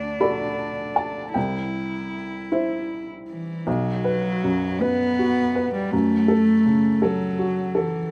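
A single warm cello joins a felt-muted upright piano in this melancholic, longing fragment of a neoclassical piece for piano and strings. It sits in B minor at a slow, rubato 6/8 of about 51-55 BPM in dotted quarters, and the cut is taken from a longer work. The cello carries a second line between E3 and E4, bowed sul tasto with a soft attack, an airy bow tone and light vibrato, heard close and up front. A felt-muted upright piano provides the accompaniment across its full span from B1 to B5, sounding mellow, boxy and intimate, with short sustain, thin felt and audible action noise. Both instruments play throughout the 8.1 seconds as the harmony moves from D to C, then shifts at 3.7 seconds to a bare B5 before settling on F#m. The recording was made outdoors with a light touch of reverb, giving an open, unenclosed feel.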